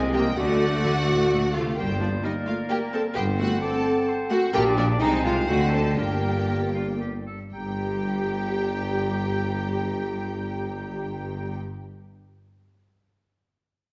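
A cinematic fragment in G minor and 3/4 opens on a clear oboe, a mellow, hollow flute, a distant clarinet and a mellow tuba over rich cellos and double basses, with a clear violin section carrying the melody from 0.1 s. Lush second violins, background violas and a dark French horn section holding sustained chords fill in beneath it at 110-131 BPM. The mood is magical and mischievous, and the tempo slows between 3.8 and 7.5 seconds before a new section begins at 7.5 seconds, all within a wet scoring-stage reverb.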